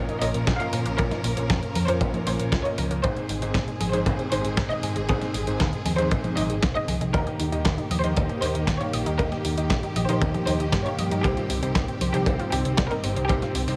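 Nostalgic and bittersweet, this short italo disco passage, cut from a longer piece, moves in a straight 4/4 through a chord cycle of Bb minor, Ab, Eb and C minor. A clear, biting chamber violin section carries the melody with light vibrato and tape echo, while a lush, distant studio string section holds sustained chords beneath it. A vintage electric grand piano with a clangy low end adds stabs through digital delay from the background, and a very quiet analog pluck, nasal and wave-folded with chorus, runs arpeggios from 0.1 seconds. The bass is a dark, round hollow-body short-scale electric, picked and amped. A detuned 8-bit drum machine supplies congas, handclaps, hi-hat and a medium-tuned snare with a tape-warm, sampler-style character, joined at 0.5 seconds by a punchy, gritty acoustic kick with a rolled-off top, while a barely audible impact marks the opening second, all set in light reverb and studio ambience.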